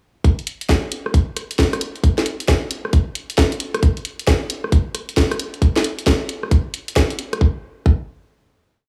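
A tight, up-front electronic kick drum drives this short UK garage piece, holding a four-on-the-floor pulse at 134 BPM in 4/4 with a 64% swing on the sixteenths. Alongside it, a layered, produced garage drum kit supplies skipping swung closed hats and rim clicks, punctuated by a cracking snare that sits forward in the mix. The mood is moody and soulful, carried entirely by these two drum parts. The groove runs from 0.2 seconds until the kit drops out at 7.4 seconds, leaving the kick to sound the final hit through to 8.0 seconds. The sound is dry and gritty, as if from hardware in a small room, with only light reverb and a touch of digital ambience around the drums.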